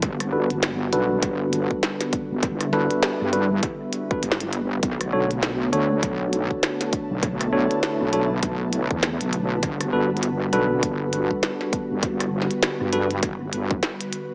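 An echo-heavy mix with a small-speaker sound and a moderate echo-chamber digital ambience frames this swaggering, playful glitch hop excerpt at 100 BPM in 4/4, with a 60% swing on the sixteenths. Up front, a punchy, layered electronic kick sits beside a glitchy kit of clicky hats, rim clicks and a tiny snare run through analog delay, both re-recorded in a small room. A heavy, saturated wobble bass built from detuned sawtooth and sine layers with chorus holds down the low end from G1 to G2. A bright, bell-like tine electric piano enters at 0.3 seconds with clean, sidechain-pumped stabs, colored by analog delay and a low-pass filter sweep throughout. Behind them, a smooth detuned analog pad with chorus and sidechain pumping sustains chords moving from Gmaj7 to Bm7 at 4.8 seconds and back to Gmaj7, while a very quiet, ethereal airy pad floats high above with a slow attack and long release.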